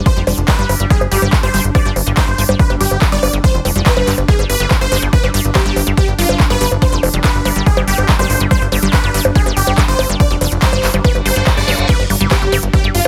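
A punchy, up-front electronic kick drives a straight pulse, joined by a layered dance kit of crisp hi-hats, handclaps, bongos and crash cymbal in this alien, driving psychedelic trance excerpt. A funky analog bass with a fast plucked attack sits beneath a lush, detuned unison pluck riff and a sawtooth supersaw stab melody with phaser and tape echo, while the pluck and stab pump with sidechain compression. An evolving, warbling wavetable pad with chorus and reverb morphs in the background, a very quiet metallic FM wobble bass drifts in from 0.7 seconds, and background sound effects add an impact, a zap and a reverse cymbal at 11.2 seconds.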